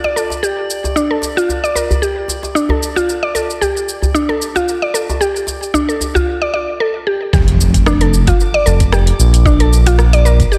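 A dense, heavily limited mix set in a moderate echo-chamber reverb opens this earthy, hypnotic stretch of organic downtempo at 113 BPM, where a woody, round mallet-like synth pluck plays up-front arpeggios with chorus and delay over a medium-tuned djembe, an electronic afro-pop kit of metallic hats, rim click and shaker, and a glassy, drifting harmonics texture in the background, moving between D5 and Bbmaj7. At 6.2 seconds the djembe stops, and at 7.3 seconds a gritty, thumpy electronic kick and a smooth synth bass with sidechain pumping enter, joined by a background electronic impact that lasts until 9.5 seconds.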